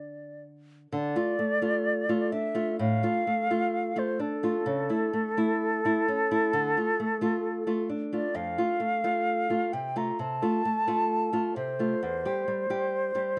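Melancholic and elegiac, this excerpt from a romantic duo for flute and classical guitar unfolds in D minor at a rubato 65 BPM in 4/4, moving through Dm, A/C#, Dm, F and C/E. A mellow, airy silver concert flute carries the expressive melody with soft attacks and vibrato, while a small-sounding, fingerpicked nylon-string guitar supplies the accompaniment, both up front and playing throughout the 13.4 seconds. Recorded outdoors with little reverb, the sound is dry.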